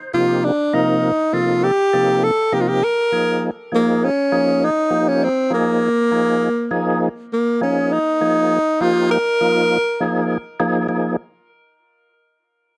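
A breathy tenor saxophone carries the melody in this slick, driving jazz fragment, its close-miked, jazz-style solo sitting up front and moving between Bb3 and Bb4 with scooped notes. The piece moves in 6/8 at 67 BPM counted in dotted quarters, with a straight feel in Bb dorian and tuning set to A4 = 443 Hz. Beneath it, a fat, lightly overdriven tonewheel organ spans C3 to C5 in accompaniment, its percussive second-harmonic attack and key click turning through a slow rotary speaker with chorus vibrato. The harmony shifts from Cm7 to Bb7sus4 at 2.8 seconds, and the music moves into a new section at 7.3 seconds. The saxophone drops out at 10.3 seconds while the organ holds on until 11.2 seconds. The sound is that of a dry, close 1970s-style studio recording with light reverb.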